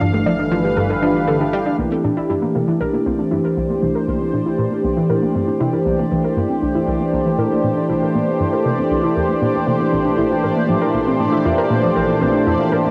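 Expansive and cosmic, this sequencer-driven ambient space music excerpt sets a bright, resonant sweeping pad of sustained chords up front over arpeggios from a warbly, dusty pluck, a punchy, funky analog bass riff with a filter sweep from 1.8 seconds, a sawtooth drone that stops at 1.8 seconds, and a bubbling stepped-filter texture fading in from 1.8 seconds, all bathed in wet spring reverb on a home cassette recording as the harmony moves from G7 to C and later Bbadd9.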